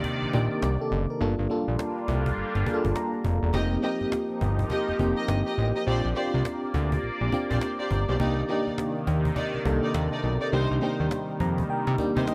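A fat, saturated analog bass sits up front with a filter sweep, driving this punchy, bouncy new jack swing cut at 103 BPM in C dorian with a swung 16th feel, over woody, close cajon hits with faint snares. A warbling vintage FM electric piano with tremolo and phaser comps the Cm9 to Gm7 to F9sus4 to Bb69 changes and adds fills at 2.7 and 11.1 seconds, while an evolving, resonant pad with chorus sustains bright chords underneath. From 3.5 seconds a lush, bowed string section with vibrato and delay adds stabs, all set in a light small-room ambience in this excerpt from a longer piece.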